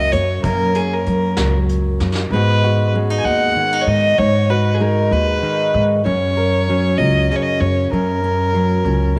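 Peaceful and warm, this acoustic folk excerpt in a slow 6/8 at 64 BPM features a focused, smooth-topped bowed fiddle solo with light vibrato over full-bodied fingerpicked dreadnought guitar and woody, dark pizzicato upright bass, while a vintage brushed drum kit with a punchy kick plays only until a short fill ends at 2.3 seconds, as the harmony moves from F# to G#m7 and back to F# at 6.0 seconds in light reverb.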